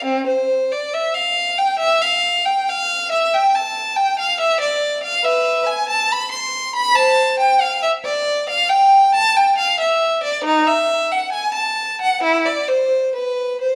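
The rhythm moves in a free, rubato four-beat pulse, stretching and easing with a serene, dance-like lilt. This classical passage, a baroque-style suite movement for unaccompanied violin, is cut from a longer piece and runs for 13.8 seconds. A single bowed violin carries everything from start to finish, its tone rich and smooth with vibrato and an even line. The player sits up front in the mix, yet the sound keeps a slightly distant quality, wrapped in the lingering reverb of a recital hall. A vinyl crackle runs beneath it, lending the recording a gently aged surface.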